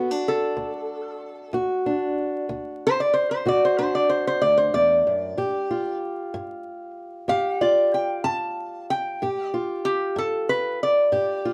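Acoustic country blues with a rollicking yet laid-back mood at 63 BPM in a straight 12/8, this short excerpt features a metallic, nasal lap resonator guitar that takes an up-front slide solo with a steel bar and fingerpicks throughout its 11.5 seconds, backed by a dark, woody, boxy ladder-braced acoustic guitar fingerpicked on old strings, all under light reverb and vinyl crackle as the harmony moves from D7 to a G7 chord at 5.4 seconds.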